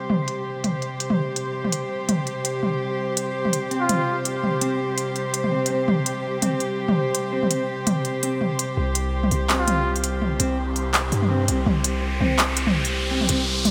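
A swung, half-time drum and bass groove drives this heavy, tense fragment of a longer piece, its overdriven electronic kit of crisp hats, handclaps and filtered toms sitting up front beside an intimate, close cello section holding bowed chords with light vibrato. From 3.7 s a dark, clean electric guitar adds fingered arpeggios roughened by sampler grit and tape echo, while a veiled, cup-muted trumpet drifts in for brief echoed phrases. At 8.8 s a build-up begins with a filter sweep and a deep, sine-toned 808 bass, and an electronic riser joins at 10.5 s, the mix set in a lush hall reverb.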